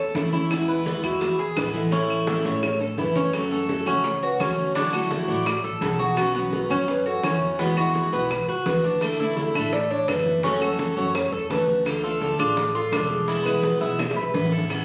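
A breathy, hollow alto flute with plate reverb carries the melody over metallic double-string tres arpeggios and a growly pizzicato upright bass from the opening of this relaxed Cuban son and guajira, joined almost at once by a bright, up-front picked steel-string acoustic guitar with audible finger squeak, soft-handed ringing congas, tight high-tuned bongos and woody background claves, with drum fills at 2.3 and 14.0 seconds and a moderate studio reverb caught on a phone in the room.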